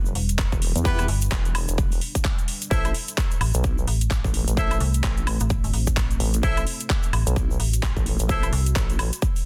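Bouncy, gritty bass house at 129 BPM with a swung 16th feel in E minor moving to A minor, driven by an overdriven, punchy electronic kick and a garage kit of handclaps, metallic hats and woodblock, while a nasal, resonant vowel-sweep wobble bass and a metallic FM bass pump up front, tight horn stabs with light vibrato and digital delay enter at 0.9 s, a grainy tube shaker sits in the background, and a deep, moody ambient pad holds sustained chords behind a dense, heavily limited master in this short excerpt.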